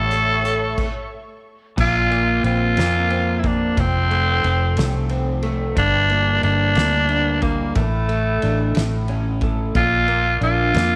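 In a slow, straight six-eight lilt at 60 BPM, this dramatic, melancholic pop ballad excerpt opens with a soft, breathy chorused pad that drops out at 0.8 s before a brief stop, then carries on with a raspy, gritty tenor saxophone singing the melody up front with vibrato over slightly broken-up, lo-fi electric guitar with analog chorus, a round, punchy, foam-muted fingered bass, and a loose indie kit with a fat snare, boomy kick and dark cymbals, all set in light reverb and small-room ambience.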